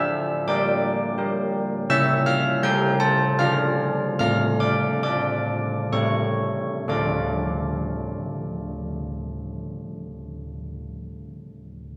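Old church bells ring alone in this brief classical fragment for bells, their bronze, clangorous tone carrying a dark minor-third overtone, each stroke sounded by a worn iron clapper. The mood is wintry and solemn in a three-beat metre, and the bells slow from 0.8 to 6.9 seconds before a second section begins, falling silent at 11.0 seconds. A wet concert-hall reverb sets them toward the back of the room, letting each stroke hang and beat.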